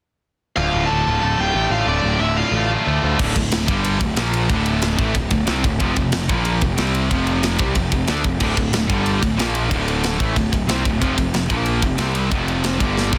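Aggressive and epic, this heavy metal excerpt in D minor charges along at 184 BPM in a straight 4/4. It opens at 0.6 seconds with a bright, delayed high-gain lead guitar carrying the melody over a dark, smooth overdriven second line, while a very quiet pipe organ with chiffy flute stops holds baroque-voiced chords. Beneath them, two high-gain distorted guitars grind out the riff and a growly fuzz-picked bass sits up front. At 3.2 seconds a crunchy, double-tracked guitar and a tight, mid-forward drum kit with a rolled-off top join in, pushing through power-chord riffing until a drum fill at 13.0 seconds, all inside a small, dense and heavily limited room sound.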